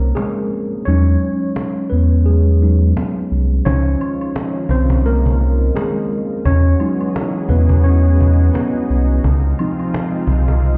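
A worn, slightly out-of-tune tine electric piano opens this nostalgic, cosy lo-fi hip hop fragment, cut from a longer piece, playing as the lead over a deep, round analog bass and a woody cajon with faint snares. The pace is a relaxed 86 BPM in 4/4, with a 58% swing on the 16ths, in Db major and tuned to A4 = 437 Hz. The mellow piano sits up front with a cassette-tape character and a low-pass filter, while the dark, sustained bass carries the low end, and the kick drops out from 0.9 to 3.7 seconds. At 3.7 seconds a lush, thick unison pad arrives, warbling and detuned with a vintage chorus, as an egg shaker, woodblock and group handclap enter in the background. The harmony drifts between Dbmaj9 and Emaj9, and the whole mix sounds muffled, as if heard through a wall, with the ambience of a small stone room around it.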